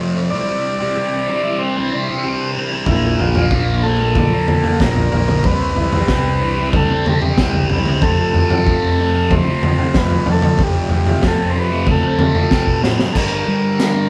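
A straight 4/4 groove at 93 BPM drives this hypnotic, hazy psychedelic rock excerpt, where a thick, double-tracked fuzz guitar with phaser plays a bright riff up front over very quiet shimmering string-machine violin chords, a reedy combo organ melody enters at 0.3 seconds, and a round overdriven bass and crunchy, gritty breakbeat kit with a high-tuned snare join at 2.9 seconds, moving from Cadd9 through Bb and F to a drum fill that lands on G5 at 13.2 seconds, all in a wet stone-room reverb.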